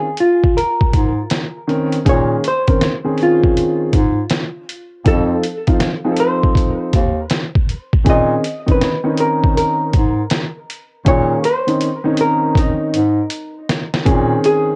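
A slow 80 BPM groove in 4/4, swung on the sixteenths, carries this smoky, nocturnal jazz-hop excerpt in Bb minor. The sampler-style drum kit sits up front, compressed, pitched down and gritty, with a thumpy kick, a medium-tuned snare and hi-hat, and a drum fill runs from 11.1 to 14.1 seconds. A bass clarinet with vibrato enters at 0.9 seconds and plays the low line in a jazz style, sounding distant and roomy yet up front. A dark, mellow baby grand piano, smooth and vintage with long sustain, accompanies through Bbm11, F7 and back to Bbm11. A clean, fingered hollow-body electric guitar carries the melody through plate reverb and analog delay, while the piano shares the plate reverb and cassette tape colours the guitar, piano and drums, giving this home recording a dusky, lo-fi cast.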